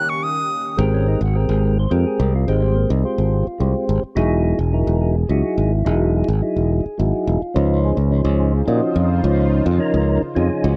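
Jazz in a straight 6/8 at 71 BPM in Ab major, this brief, funky and bright cut opens with a band accent over an Eb7 chord, where a reedy silver flute sings a short, vibrato-tinged phrase with tape echo alongside a detuned, chorused pad. At 0.8 s the flute and pad drop away as a percussive tonewheel organ and a growly fingered electric bass take over, settling on Abmaj9 before moving to Emaj9 at 4.2 s and Dbmaj9 at 7.5 s. The organ sounds round and dark, its third harmonic percussion giving each chord a clean click while a slow rotary speaker gently turns its tone. The bass sits prominently up front, direct and bright in the low register. At 7.6 s the evolving, full-bodied pad returns beneath the organ and bass, its slow attack and filter swell rising under the final chord, all captured in a dry, close 1970s-style studio sound with digital ambience.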